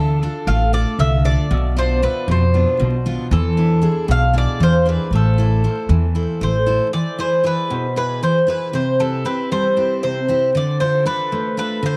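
A metallic, double-strung bouzouki carries the melody in this brooding, cool Greek folk excerpt in a straight 7/8 at 232 BPM in eighths, playing from the first moment alongside a full-bodied picked jumbo acoustic guitar, both bathed in dub echo, while a woody pizzicato upright bass holds the low end until 6.8 seconds, all set in a small room with light reverb and vinyl crackle as the chords move from Dm through Bdim, E7 and Am to E, C and back to Dm.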